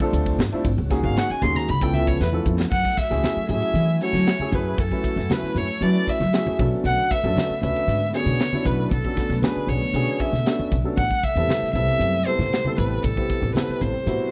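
Dry, close and lightly reverberant, this short cut from a longer electric jazz fusion piece has a 1970s studio sound and a funky, intense mood in a straight four. A crisp, polished acoustic kit drives it, with bright cymbals, a high-tuned snare and a punchy kick, while low-tuned congas ring with hard hands in the background. A woody, thumpy pizzicato upright bass on steel strings anchors the low end, and a grand piano with long sustain supplies warm, natural accompaniment. Behind them, a silky, detuned sawtooth string pad with slow attack and ensemble chorus holds sustained chords. A single bowed violin, rich and focused with vibrato, enters at 1.0 s for an up-front solo, and a drum fill from 2.2 s carries the opening suspended and altered chords into a section built on minor-ninth harmonies from 2.7 s.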